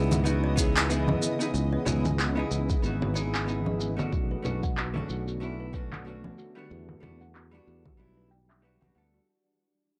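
Sunset chillout at 93 BPM with a relaxed, smooth swing, this short excerpt moves through C#m9, Bm9 and Em9 as a dark, clean hollow-body jazz guitar with analog delay and an up-front fretless bass with transformer saturation carry the harmony beneath a shimmering, ethereal pad and a woody kalimba playing arpeggios in the background. Electronic congas, shaker and handclaps sit up front beside a deep electronic kick that enters at 0.6 seconds, while low-tuned, ringing acoustic congas join at 1.1 seconds. The sound is dry and gritty, and filter sweeps on the drums, pad and kalimba run through the whole fade-out.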